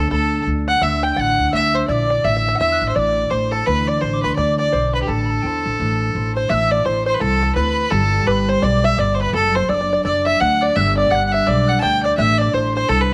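A bowed fiddle carries the melody up front from the very start of this spirited, wild Celtic hornpipe in A dorian, swinging along at 169 BPM in 4/4. Its tone is smooth and even with a light vibrato, while a tongued tin whistle with an airy chiff and a hollow, mellow edge sits in the background on a higher second line. A fingerpicked open-back banjo adds a twangy, plunky second line behind it, and a thumb-plucked concert harp fills in ringing accompaniment. The upright bass, woody and pizzicato, stands up front beneath the harmony, which moves from D through Am in the first section and shifts toward Gadd9, D/F# and G when the second section arrives at 6.5 seconds. A small room's light reverb surrounds the ensemble in this excerpt cut from a longer piece.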